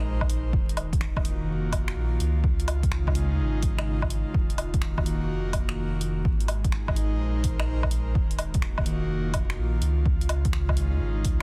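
This future garage passage, cut from a longer piece, feels ghostly and wistful, with a swung sixteenth-note shuffle. An airy, breathy pad, detuned and chorused with a soft noise layer, holds sustained chords that pulse with sidechain pumping. Beneath it a round, mellow sine sub bass carries the low end with a fast attack. At 0.2 seconds a punchy, layered electronic kick arrives with a deep house kit of finger snaps, hi-hat and woodblock, and a touch of soft clipping on the snare. The harmony drifts from Ab through Ebm7, Db, Ebm and Ab7, then back to Ebm7 and Db, over a dry, dense and heavily limited master dusted with vinyl crackle.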